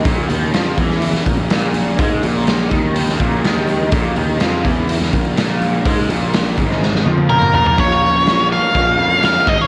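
An up-front octave-fuzz lead guitar with distortion and slapback echo enters at 7.3 s over a hypnotic, mysterious psychedelic rock groove at 124 BPM in Bb minor, where a double-tracked, lo-fi overdriven garage guitar riff with phaser, punchy fuzz picked bass, a gritty, saturated drum kit with a fill from 6.8 s, very quiet high-tuned congas and a faint, shouting tonewheel organ with slow rotary holding sustained chords sit within a moderate echo-chamber reverb, in a passage cut from a longer piece.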